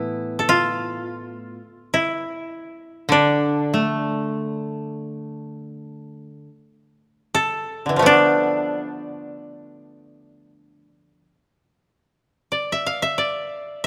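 Unfolding in free time, this meditative, solitary fragment of Japanese chamber music in D kumoi sets a bright, woody koto melody ringing up front through a moderate concert hall reverb, while a second, softer koto adds accompaniment in its lower register until it falls away at 6.5 seconds, leaving the lead to carry on alone to 13.9 seconds.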